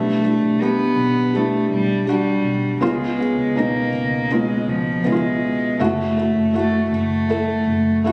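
Over a straight, unhurried 4/4 pulse at 81 BPM, this emotional, heartfelt pop ballad excerpt sets a single floating, sul tasto cello melody up front against a felt-muted upright piano with soft, intimate tone and audible action noise, a round, foam-muted fingered electric bass low beneath, all moving through Em7/B, C#7 and F#m7 in an echo-chamber reverb captured on a phone in a club-like room with compression.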